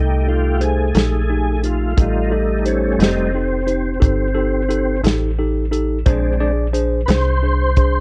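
A tonewheel organ leads this short slow-blues clip, soloing up front with a smooth, clean tone colored by a slow rotary speaker and chorus vibrato. The groove sits at 59 beats per minute in a straight 12/8, with a gritty, rollicking mood. Beneath the organ, a metallic, digital FM bass with a fast, decaying attack sits prominently low in the mix. A dry, dark soul drum kit enters at 0.6 seconds, with a tight kick, a medium-tuned snare and hi-hat. A worn, slightly out-of-tune tine electric piano plays mellow accompaniment through a combo amp throughout, filling in the harmony as it moves from F9 to Bb9 at 6.1 seconds. Light studio reverb and a cassette-tape sound with a soft, rolled-off top give the recording a dusty character, and the clip is cut from a longer piece.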